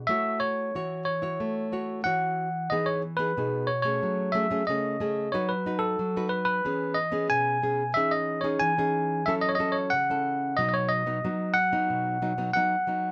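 Moderate studio reverb surrounds this short section of a longer piece, with both instruments placed up front. It is a playful, lively samba in a straight four, carried by a fingerpicked nylon-string guitar whose acoustic, classical tone supplies the accompaniment from 0.0 s to the end. A bell-like tine electric piano, bright, clean and direct, takes the melody from 0.1 s and sits slightly louder than the guitar. After a brief opening on an A6 chord, the second section begins at 2.7 s and moves through Emaj7, F#madd9, E6 and F#m7 before arriving on B. The effect is light and cheerful, with the piano's bright lead set over the guitar's warm support.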